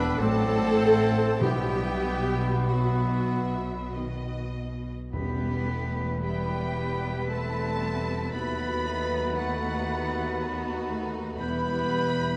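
Solemn and elegiac, this slow, rubato classical movement in E minor and 3/4 at 46-60 BPM sets a rich violin section's vibrato melody over a clear second violin line, a mellow clarinet, a distant warm oboe, a rich background viola accompaniment, very quiet mellow French horn chords, distant clear trumpet stabs, smooth cello and double bass sections on the bass, bright trombone chords until 4.4 s, close, dry hard-mallet timpani from 1.4 to 6.7 s, and an airy, hollow flute entering at 5.1 s, all in a moderate concert hall reverb.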